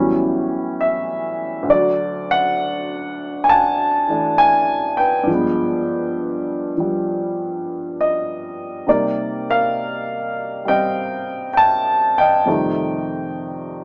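Solo jazz played on a single upright piano, slow at 67 BPM in 4/4 with a lilting swing on the eighth notes, carrying a warm, sophisticated mood. The piano covers a broad span from D2 up to A5, and its tone is woody with long sustain, sitting up front in the sound. The harmony moves through rich jazz colors, opening on A13 and passing through D, G7b9 and Cm7 before landing on F9 at 12.5 seconds. The room adds a moderate booth ambience with a short decay, and the overall sound has a small-speaker character. This brief passage of about 13.8 seconds is cut from a longer piece and presents a single section of the tune.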